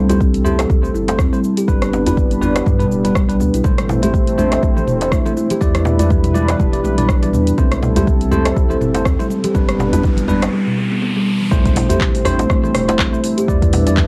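An overdriven, deep electronic kick drum sits up front in this earthy, spiritual afro house cut from a longer piece, moving at 122 BPM in 4/4 with a 56% swing on the sixteenths in A minor. Beneath it sit a round, sustained sine sub bass and a moody, detuned sawtooth analog pad with chorus and a slow attack, whose sustained chords move through C6, G, Am and Em7. Both pump against the sidechain. Bell-like tine electric piano stabs ring bright and clean through tape echo, while a woody kalimba plays thumb-plucked arpeggios in the background, darkened by a low-pass filter. An afro-pop kit with metallic hats, handclaps, rim clicks, shaker and toms sits alongside soft-handed djembe, and very quiet, hard-handed congas play from 3.6 to 10.5 s. A faint electronic riser builds from 9.3 s into a brief break, then an impact marks the drop at 11.5 s, all carrying the character of a home cassette recording in a small room.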